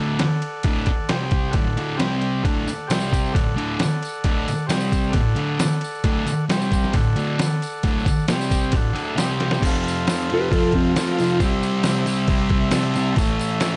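A straight 4/4 garage-rock groove with a swaggering, rowdy mood is driven by an up-front, compressed, pitched-down, sampler-style drum kit with a thumpy kick and medium-tuned snare, while a thick, double-tracked fuzz guitar pounds out a picked riff that rocks between D and C5 chords. A vintage, reedy combo organ holds sustained chords behind them with spring reverb and adds brief fills, and a jingly tambourine sits in the background from 2.7 seconds. After a drum fill near 9.4 seconds the harmony shifts toward F, C and A, and a clean lap steel guitar slides in at 10.3 seconds with a short, delay-tinged melody built from volume swells in this excerpt.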